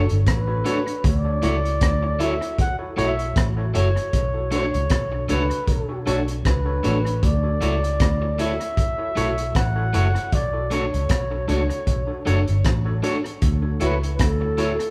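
Tender and smooth, this lovers rock reggae excerpt moves at an unhurried 78 BPM in D major, with a swung sixteenth-note feel and a harmony that sways between Bm9 and Dmaj9. A breathy flugelhorn carries the melody in a jazz style, its soft attack, scooped notes and light vibrato giving it a whispered, intimate quality even as it sits distant and roomy in the mix. Beneath it, a worn tine electric piano plays the accompaniment, slightly out of tune and lightly overdriven through built-in speakers, trailing dub echo. A round, foam-muted vintage electric bass sits dark and up front, joined by a crunchy breakbeat kit of kick, hi-hat and rim click whose punchy, saturated sound has a rolled-off top and a gritty edge. An electric guitar at the edge of break-up adds picked stabs from 0.6 seconds, while the whole band plays together in a large studio with a moderate reverb.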